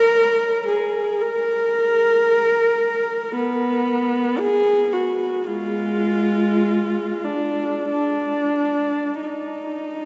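Rubato 4/4 phrasing drifting between 44 and 57 BPM carries this serene, lyrical classical fragment of about 10 seconds, cut from a longer piece, in which a lone bowed viola sings across a range of Ab3 to Bb4 with a dark, intimate sul tasto tone, soft attacks, an airy bow and vibrato, set in a cavernous cathedral reverb with a 7.2-second decay and a dim, muted top end.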